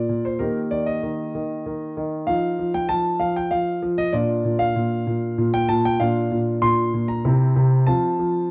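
Cheerful and elegant, this brief excerpt from a classical-period piano sonatina moves in a graceful triple metre with a rubato feel. A solo grand piano carries the whole passage, its tone smooth and vintage, sitting up front in the mix as it spans a range from Bb2 to C6. The harmony travels through Eb, F9, Bb and C7 before settling on F at 7.9 seconds. A moderate stone-room reverb lends the playing a gentle sense of space. The production is dark and warm, rounding off the upper frequencies so that nothing sounds above 7.9 kHz.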